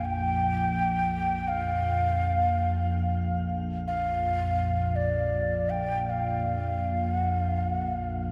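A breathy, mellow xiao leads this peaceful, free-time world meditation piece. Its bamboo tone sits up front with vibrato and rolled-off highs, carried on shimmer reverb and a diffuse ambient delay. Alongside it, a glassy, ethereal FM pad holds a low sustained drone with slow attack and ensemble chorus, while a very quiet bronze singing bowl rings with slow metallic beating until 6.3 s, all set in a spacious, dreamy mix soaked in cathedral reverb.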